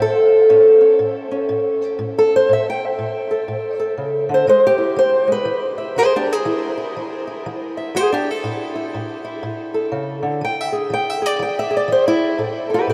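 Drenched in a huge, echoing reverb that makes the room sound vast, this short cut from a longer acoustic country blues piece has a gritty, laid-back mood at 121 BPM in 4/4, with a loping swing on the eighth notes in A major. A lone fingerpicked, ladder-braced acoustic guitar sits up front, its old strings giving a dark, woody, boxy tone touched by slapback echo as it ranges from A2 to G5. The guitar plays solo from 0.0 to 12.9 seconds over a simple move between A and E, with the chords dropping away at 12.4 seconds.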